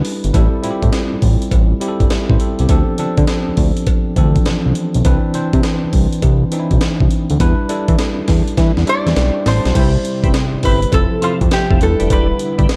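A swung sixteenth-note groove at 102 BPM in 4/4 drives this confident, punchy new jack swing excerpt, built on a compressed, gritty breakbeat kit with a thumpy kick and a high-tuned snare sitting up front, its sound re-recorded in a large room. Beneath it a fat, saturated analog bass carries the low end with a filter sweep, while a bell-like tine electric piano plays clean, direct accompaniment through the chords Am7, Dm7, Cmaj9 and Em7, and a very quiet, dry cowbell joins from 0.3 seconds. Around 8.6 seconds the drums and electric piano both play fills, and at 8.9 seconds a bright, nasal resonator slide guitar, played with fingerpicks, takes up the melody. From 9.7 seconds a swirling phased pad with chorus settles into the background and a smooth tonewheel organ adds stabs through a slow rotary speaker, as the harmony moves through Cmaj7, Fmaj7 and Em7. The production is dark and warm, with little reverb.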